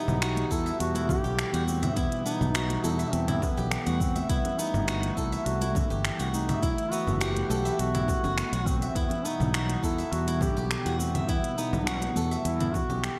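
A mellow duduk sings a folk-style melody with vibrato and scooped notes over a breathy, detuned pad and a silvery steel-string zither played with fingerpicks, both reed and zither carrying slapback echo, while a direct fretless electric bass, an organic electronic kit of cabasa, finger snaps, congas and crisp hi-hat, close ringing hand congas and a deep, tape-warm electronic kick settle into a mystical, earthy organic downtempo groove, all bathed in a lush hall reverb with a big arena sound before this cut from a longer piece fades out from 12.1 seconds.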